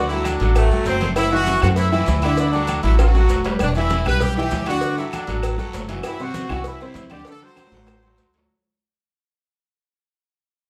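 A brilliant, punchy horn section carries the melody up front in this fiery, passionate salsa at 197 BPM, with a bright saxophone section adding a brief second line around 0.6 seconds. A dark, thumpy upright bass with gut strings sits forward beside an open-sounding concert grand piano with deep bass and long sustain, while ringing congas, a round low cowbell, agogo bells with metal-shelled timbales, grainy maracas, woody claves and a raspy guiro fill the background. The band plays live in a large reverberant room, with drum fills at 3.0 seconds and again near the end as the music fades out from 3.6 seconds.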